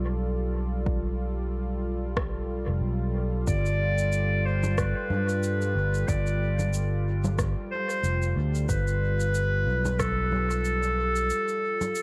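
Ambient dub at 92 BPM in G mixolydian with a hazy, spacious mood, this 12-second extract opens on a G9 chord from a smooth, detuned analog pad with chorus and a round, dark fingered electric bass up front, joined at 0.9 s by a deep, overdriven electronic kick with studio reverb, then by overdriven electronic rim click, shaker and congas soaked in dub echo, before a bright, soft-attacked clarinet enters at 3.5 s as a distant, roomy solo voice trailing its own dub echo through an echo-heavy mix with moderate spring reverb.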